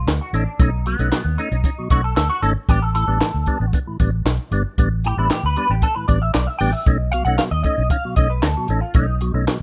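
Funky and gritty, this short slice of straight-feel funk at 115 BPM in B mixolydian moves from B9 to A9sus4 at 2.7 seconds and back to B9 at 6.9 seconds, set in a rough home-demo room sound. A bright, twangy, clean electric guitar with envelope filter, wah and ensemble chorus plays accompaniment up front, and a clean electric guitar solo runs throughout. Beneath them, a dark, foam-muted fingered bass with a round, amped punch and a dry cocktail drum kit with a high-tuned snare, punchy kick, hi-hat and handclaps drive the groove, while a mellow tonewheel organ with third-harmonic percussion, light overdrive, chorus vibrato and fast rotary speaker adds stabs from 0.3 seconds.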